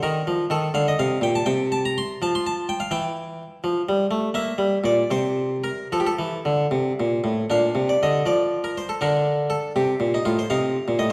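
A 6/8 pulse of roughly 72-85 BPM in dotted quarters moves with a free rubato through this serene, flowing passage, cut from a longer baroque-style suite movement for solo harpsichord. The harpsichord is Italian in style, plucked on one set of strings and bright in tone, sitting up front across a range from A2 to C6. It passes through F and G minor harmonies in F major before settling into B-flat major at 7.5 seconds and touching C minor near the close, all heard through the generous reverb of a recital hall in a dark, warm production.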